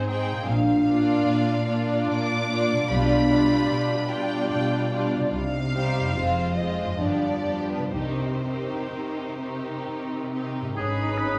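Solemn and melancholic, this slow romantic orchestral movement in triple time moves with a flexible, rubato pulse, heard here as a short fragment of a longer work. From the opening, a lush violin section carries the melody with focused vibrato, while a second violin line and a distant viola section supply smooth, even support beneath it. A concert harp rings in the background with fingerpicked arpeggios, and an intense cello section holds the bass, joined at 0.5 seconds by a clear double bass section. The harmony moves through its C minor progression before turning to a G-sharp minor chord at 10.8 seconds, where woodwinds briefly enter: a bright oboe placed up front, an airy, hollow flute group high above, and a mellow clarinet set back in the background. The whole ensemble sits in a moderate concert hall reverb that lends the bowed strings a full, resonant glow.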